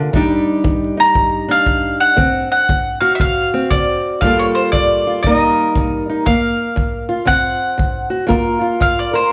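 A swung 4/4 pulse at 118 BPM drives this short, smoky and mournful acoustic country blues cut in G minor, with a punchy kick drum played with brushes thumping underneath a dark, woody, boxy fingerpicked ladder-braced acoustic guitar whose old strings carry a slapback echo through chords such as Ebmaj7, D7#9, Gm9 and Cm7. A bright bowl-back mandolin with doubled strings enters at 1.0 seconds, sitting up front with the melody and taking a brief solo from 8.3 seconds over Gm7. The whole take sounds like a live club gig heard through the house PA, with small-room reverb, vinyl crackle and a dull, rolled-off top end.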